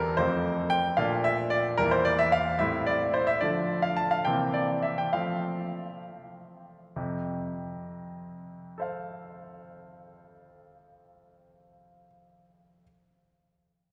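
A long, wet cathedral reverb of about 4.3 seconds surrounds this church or concert-hall recording, so each note rings into a spacious, glowing room. It is a 12.8-second excerpt from a classical-period piano sonatina in F major, set in a straight 6/8 at 64-75 BPM counted in dotted quarters, with an elegant, cheerful mood. A solo concert grand carries everything, its brilliant, polished tone sitting up front with deep bass and short sustain across a range from E2 to A5. The harmony moves from F through Bbmaj7, Edim, Am7, Dm and C7 before settling back on F. From 2.6 to 7.0 seconds the tempo slows, easing the opening section toward its close before a contrasting passage begins.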